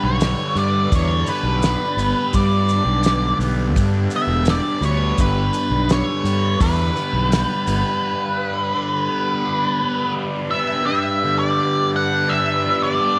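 A kaleidoscopic, hypnotic stretch of psychedelic rock, cut from a longer piece, moves at 84 BPM in a straight 4/4 and stays rooted on a G chord in G lydian. An up-front octave-fuzz lead guitar carries the melody in a dark, distorted tone with slapback echo, while a bright, double-tracked fuzz guitar drives a compressed riff through a phaser. Beneath them, a reedy, vintage combo organ sits in the background holding overdriven chords with heavy vibrato. A round, dark fuzz bass, fingered and overdriven, anchors the low end alongside a dry 70s drum kit with a fat snare and tight kick, and grainy, mellow maracas sit close in the background. The bass, drums and maracas drop out at 7.8 seconds, leaving the guitars and organ to carry the closing moments in a moderate spring reverb.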